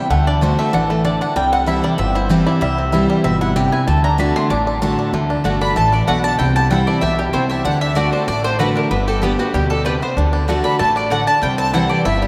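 Bluegrass at a lively 191 BPM in D mixolydian, this rustic excerpt pairs an up-front, full-bodied jumbo guitar with finger squeak, a twangy fingerpicked banjo playing arpeggios, a thumpy pizzicato upright bass on dark gut strings, and woody double-stringed mandolin stabs that carry a solo through the first 5.1 seconds; at 5.6 seconds a mellow, round mandolin melody and a distant, nasal bowed fiddle with light vibrato enter, and the music rings out in a vast, echoing space.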